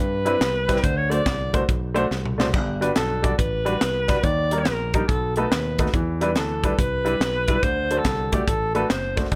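A vibrato-laden alto saxophone carries the melody up front in a roomy, pop-style solo, opening this short, jubilant slice of uptempo gospel cut from a longer piece. The tune moves at 142 BPM in a swung 4/4, full of hopeful energy as the harmony travels through Cmaj7, D7, Gmaj7, Ebmaj7, B7, Em7 and back to D7. A fingered electric bass sounds from the very start with a growly, direct tone, and a baby grand piano with a natural, short-sustained touch joins at 0.3 seconds to supply accompaniment. The acoustic fusion drum kit arrives at the same moment, polished and airy, with a punchy kick, a high-tuned snare, hi-hat, splash cymbal and toms, and it plays a fill at 2.1 seconds. A light reverb gives the bright, celebratory performance a gentle sense of space, and the saxophone drops out at 9.2 seconds, just before the clip ends.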